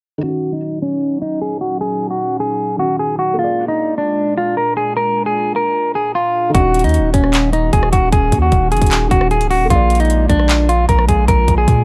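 A half-time trap groove lands at 6.5 seconds, when the electronic kit's hard-clipped kick, metallic hats, handclaps and rim clicks arrive together with a deep, long sine 808 bass, both up front and menacing in this hard-hitting hip hop cut from a longer piece. From the start, an up-front, slightly broken-up electric guitar carries a dark, compressed melody through a low-pass filter and tape echo, over a felt-muted upright piano, soft and intimate with audible action noise in the background, and a hollow, flute-like pad whose chorused chords swell in slowly and sustain. A filter sweep runs through the opening 6.5 seconds, and the dry, gritty recording, with light reverb, moves between minor seventh and dominant seventh chords.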